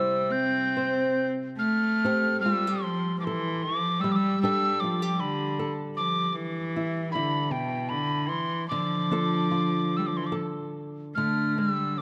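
Close, detailed microphones sit inside a moderate concert-hall reverb on this short fragment of a mournful, haunting Celtic slow air in 6/8, its uneven, rubato pulse breathing freely. A metal tin whistle carries the melody up front with a breathy, hollow, tongued chiff and rolled-off highs, while a single bowed cello adds an earthy second line with light vibrato, and a dark, fingerpicked flamenco guitar, sitting slightly lower in level, supplies the accompaniment, complete with finger squeak. The harmony drifts through C, Fadd9 and Gsus2, passes through a chordless moment at 6.4 seconds, then settles on D minor at 8.7 seconds before ending on a bare D5.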